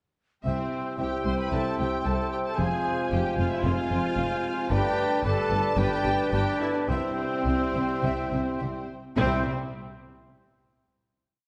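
In straight 4/4 at 103-114 BPM, this heroic adventure film cue in C major moves with a soaring, heroic mood, and it slows down from 3.6 to 9.2 seconds before settling on a final chord held from 9.2 seconds to the close. The full orchestra enters together at about 0.5 seconds, just after the clear trombone section at 0.4 seconds. A warm symphonic violin section carries the melody with smooth vibrato and doubles the tune at the octave, while a second, lush violin section in the background plays a driving rhythmic ostinato and sustained chords. A rich, intense viola section adds its own accompanying line, and a dark cello section with expressive portamento drives the bass, doubled by a distant double bass section. Flute, dark cor anglais and a very quiet clarinet shape chords in the rhythm of the tune, while dark French horns, a mellow trumpet section playing stabs, and the trombones hold chords over a C, Fm, Gadd9, C progression. 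A wet scoring stage reverb with a 1.6-second decay surrounds the whole ensemble.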